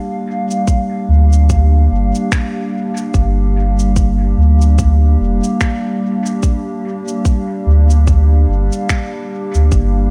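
A warbling, detuned pad with a lo-fi, nostalgic tint opens the music at 0.0 s, holding a slow-attack Gm7 chord through chorus and its own reverb in this hazy, spacious ambient dub piece at 73 BPM in G minor, with a swung 16th-note feel. Soon a tight, up-front electronic kick and a softer layer of electronic cabasa and finger snaps, carrying dub echo and small-room ambience, take up the groove, and a deep, round sub bass with tube saturation arrives at 1.1 s to sit prominently beneath them. A light reverb wraps the whole short passage, which is cut from a longer piece.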